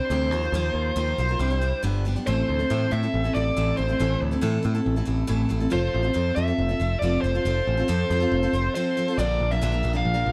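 A bluesy overdriven lead guitar, dark and distorted with a tape echo trailing its picked line, carries the melody up front in this short cut from a longer folk rock and heartland rock piece, moving at 139 BPM in a straight 4/4 with a hopeful, open-road mood. A full-bodied steel-string acoustic with fresh, bright strings picks out chords from Ebsus2 through Cadd9 and G to Am and F, while a punchy, direct electric bass enters at 0.1 seconds. After a break at 8.7 seconds, the harmony lands on Bb, all set in a dark production with light reverb.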